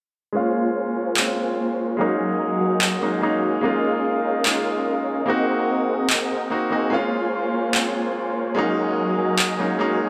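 A swung, half-time 4/4 groove of layered, tape-warm electronic handclaps with studio reverb enters at 1.2 s in this lush, bittersweet future bass clip cut from a longer piece, where huge, detuned sawtooth supersaw chords under a low-pass filter move through Bbm7, Gb69, Db6 and Ab9 beside a brilliant, intimate grand piano carrying vintage 12-bit sampler grit, dub echo, a low-pass filter sweep and audible action noise, the whole placed in a moderate hall reverb.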